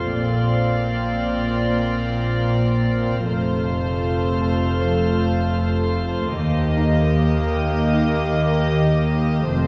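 This cinematic suspense film score excerpt has an uneasy, mysterious mood in a straight 4/4. A marimba with soft mallets enters at 0.1 seconds with a woody, round riff set in the background, while a violin section floats a pure, distant melody played sul tasto with a gentle attack. Violas add sul tasto accompaniment, and cellos and double basses hold the bass, the basses close and intimate with a light vibrato. A glassy harmonics texture sustains bright chords with drifting overtones, colored by chorus and its own reverb, and a very quiet fingerpicked concert harp rings until 9.5 seconds. The harmony moves from Bbadd9 to F to Eb, and a wet scoring-stage reverb surrounds the ensemble.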